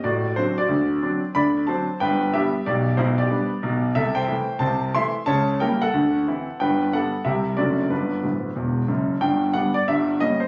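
Swinging and exuberant, this short stride-piano jazz cut in G major moves at a brisk 183 BPM with a swing feel, featuring a solo concert grand that sits up front, clear and smooth with deep bass and a vintage character, spanning D1 to C6 over changes that circle through D7, G and passing diminished chords, adding a fill from 8.2 to 9.2 s, and captured on a phone in the room with light reverb.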